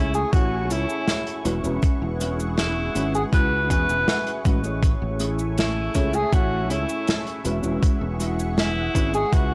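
A breathy, whispered alto saxophone carries the melody through tape echo in this nostalgic, faded vaporwave fragment, over a round FM electric piano with phaser and chorus, a thick detuned unison pad, a growly fretless bass, a dark background electric guitar riff with 12-bit sampler grit that adds a clean fill from 3.3 to 4.8 seconds, an airy acoustic kit of cabasa, hi-hat and snare, and a thumpy, up-front electronic kick, set in a gritty small-room cassette sound.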